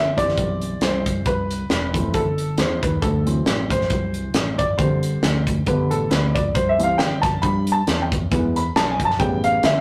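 A warm baby grand piano and a dark, round fingered electric bass open this short excerpt of uptempo gospel together, with a crisp fusion drum kit joining at 0.2 seconds. The piano takes the solo role from start to finish, sitting up front with a natural tone, while the bass anchors the low end with a direct, amped punch. The acoustic drums play hi-hat, kick and snare, featuring a high-tuned snare, a punchy kick and a rolled-off top that keeps them mid-forward in the mix. At 136 BPM in 4/4 with a light swing on the eighth notes, the music moves through C, Am, D7, Gsus4, G, C, E and A7 in C major, feeling soulful and hopeful. A moderate studio reverb and tube saturation give the whole a rough rehearsal-room character.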